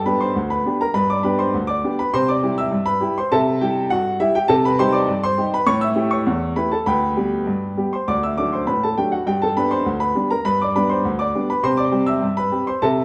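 Cheerful and jaunty, this brief solo ragtime passage moves in a straight two-beat metre, cut from a longer piece and running 13.0 seconds. A baby grand piano sits up front with a warm, boxy tone, ranging from low bass to upper treble as the harmony passes through a colourful minor turn before settling back home. A moderate recital-hall reverb lends the instrument a sense of space.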